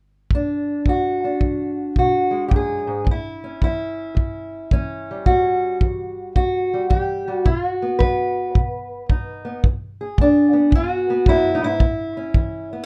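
From 0.3 s a dark, boxy parlour-style steel-string acoustic guitar fingerpicks the melody over a tight, smooth kick drum with a rolled-off top, both up front, in this laid-back, rollicking fragment of acoustic country blues in E mixolydian at 110 BPM with a swung 4/4 feel, tuned to A4 = 436 Hz and moving through E7, A7 and B before a second section starts at 9.6 s, all set in light reverb with a faint mains hum.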